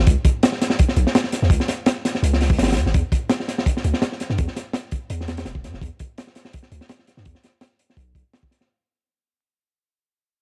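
A deep, sine-toned 808-style bass opens this drum and bass and jungle clip, its long notes striking with a fast attack and then decaying, before a crunchy breakbeat kit enters at 0.1 seconds. The drums sit up front, saturated and gritty, with a punchy kick, a high-tuned snare and hi-hat, like an acoustic kit in a small room with a dark, rolled-off top and a lightly swung feel. The dry hardware recording carries vinyl crackle and a raw, nostalgic mood, and it fades out across its whole length, cut from a longer piece.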